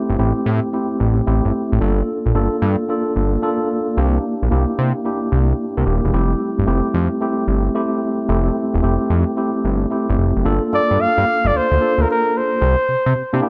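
Lightly reverberant and close, this slick, confident R&B fragment with a swung sixteenth-note feel sets a mellow tine electric piano, clean through its built-in speakers, over a fat, detuned sawtooth analog bass with a fast attack and a filter sweep, until a veiled, bucket-muted jazz trumpet enters at 10.7 seconds for a smooth-topped solo with light vibrato.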